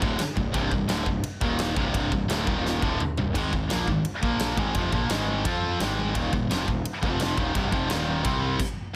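A high-gain distorted electric guitar sits up front with a bright, picked riff in this dark, aggressive heavy metal excerpt in C minor at 171 BPM, backed by a second tight distorted guitar in the background, a growly fuzz-overdriven picked bass and a big acoustic rock drum kit with bright cymbals and a tight kick, moving through power chords on C, Eb, Ab, Bb and F with a drum fill at 2.6 seconds before a stop at 8.6 seconds.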